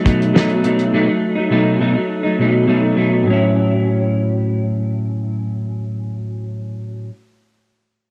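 This home cassette recording is bathed in moderate spring reverb, a sunny, dreamy slice of indie and bedroom pop cut from a longer piece. A cloth-damped, thuddy drum kit, treated with cassette tape and bearing a fat snare, tight kick, hi-hat and a rolled-off top, sounds only briefly before stopping at 0.9 s, leaving the warm, clean, picked electric guitar up front on its own. Coloured by ensemble chorus and a warbly pitch drift, the guitar moves from B7 to A6 at 3.3 s in a straight 4/4 feel.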